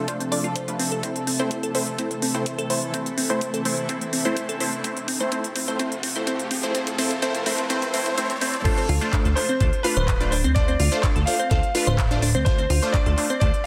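A shimmering ambient pad opens this progressive house excerpt in D minor at 126 BPM, its detuned, ethereal chords pumping with the sidechain through chorus and reverb in an expansive, dreamy mood. Almost at once a glassy wavetable pluck spins delayed arpeggios, and a sawtooth supersaw stab punctuates the harmony through phaser and a filter sweep across the build-up. Beneath them a knocking electronic kick drives the straight 4/4 with a pop kit of crisp hats, handclaps and crash cymbal that carries a long drum fill. A very quiet riser joins at 4.0 seconds as the chords move from Dm7 through Am to F. At 8.7 seconds the drop lands back on Dm7: the pad gives way, a brilliant concert grand piano takes the melody with delay and long sustain, and a punchy, funky analog bass sits up front and anchors the low end. The mix sits in moderate digital ambience within a dense, heavily limited modern master.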